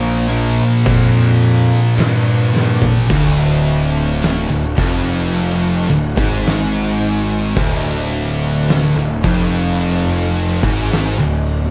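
A growly, overdriven fuzz bass sits up front in this hypnotic, ominous stretch of stoner and doom metal, crawling at 54 BPM in D minor over a dark, lightly reverberant production. Two thick fuzz guitars churn the riff in the background while a bright, scooped, double-tracked high-gain guitar doubles it, moving from a Bb5 chord to D minor at 3.1 seconds. An oversized, low-tuned drum kit with a fat snare, punchy kick and muffled, rolled-off cymbals joins at 0.9 seconds and plays a fill just before the change.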